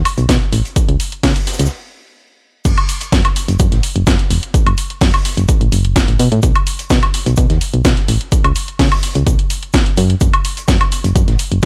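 A round, dark FM bass with a fast attack sits up front and pumps against the sidechain in this soulful, energetic piano house excerpt, joined by a punchy analog-style electronic kick that carries a small-room character. A layered garage kit adds a cracking snare, bright hats, crash and woodblock, while a gritty, saturated breakbeat kit with a rolled-off top and a medium-tuned snare sits smooth and dark in the background. After a brief stop from 1.7 to 2.7 seconds, the groove drops back in for the rest of the clip.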